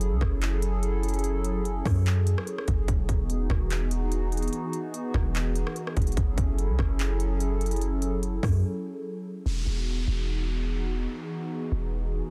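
A hollow, flute-like pad runs from the first moment of this floating, dreamy cloud-rap excerpt in E major at 146 BPM, holding sustained chords that warble with chorus and phaser under sidechain pumping, moving from F#m7 to Emaj7 and back. Beneath it, also from the start, sits a deep, boomy 808-style bass with a sine tone, a noise layer, a fast attack and a mellow decay, while a trap kit of handclaps, crisp hi-hats, a hard-clipped kick and rim clicks drives a half-time 4/4 feel. The kit sounds electronic and produced, re-recorded in a small room, and it stops at 8.5 seconds for a short break. At 9.5 seconds, as the harmony settles on Emaj7, an electronic downlifter enters beneath the dark, vintage-sounding pad and the bass. The mix is dry, with little reverb, and the master is dense and heavily limited, with the pad, bass and drums all placed up front.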